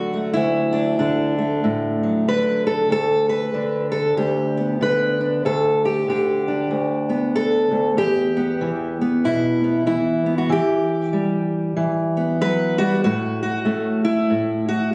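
A gently swung eighth-note pulse at 95 BPM in 4/4 carries this short folk passage, cut from a longer piece and lasting about 14.9 seconds. A single fingerpicked steel-string acoustic guitar plays solo throughout, sitting up front with a warm, concert-like tone and ranging from D2 up to B4. The harmony moves from D to Gadd9/D at 2.9 seconds, settles on Em at 8.0 seconds, and arrives on A at 13.0 seconds, giving the passage a hopeful, unhurried lift. Captured on a phone in the room and dressed with a light studio reverb, the guitar has an intimate, close presence that suits the gentle mood.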